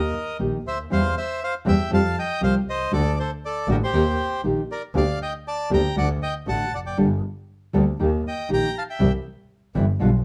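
A dark studio recording with a moderate reverb tail frames this short passage cut from a longer tango. The feel is rubato, and the mood is dramatic and sultry. A reedy bandoneon carries the melody up front, its tone boxy as if heard in a small room, until it falls silent at 9.1 seconds. Beneath it, a single bowed double bass sings with a biting, nasal edge, light vibrato and an airy bow, sounding earthy, close and clear. A nylon-string guitar, woody and full-bodied with the aged sound of old strings, enters at 0.4 seconds with a thumb-plucked accompaniment in a deep classical vein. The harmony moves through chords such as Eb, Fsus2, D and Gmadd9 before arriving on C.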